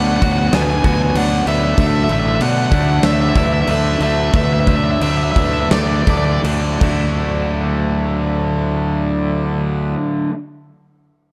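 Dark and lightly reverberant in a small room, this euphoric, hopeful post-rock excerpt in D major moves in a straight 4/4 at 77-96 BPM and gradually slows, as a crunchy overdriven guitar carries a delayed melody until 6.4 seconds over an up-front, round fuzz bass, two compressed distorted guitar riffs in the background, very quiet clean arpeggios from a twangy guitar, delayed vibraphone arpeggios struck with medium hard mallets, a reedy, breathing pedal harmonium holding sustained chords, and a huge arena drum kit with punchy kick and bright cymbals that stops at 7.0 seconds, the harmony moving from Bm/D to Dadd9.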